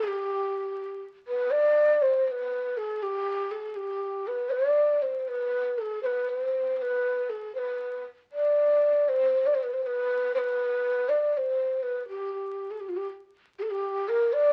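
Through the crackle of a very old 78 rpm record and a moderate studio reverb, a breathy, hollow ney plays alone and up front in this longing, hypnotic Persian fragment in a straight 6/8, its brief opening phrase giving way at 1.5 seconds to a longer passage of soft-edged, straight-toned melody.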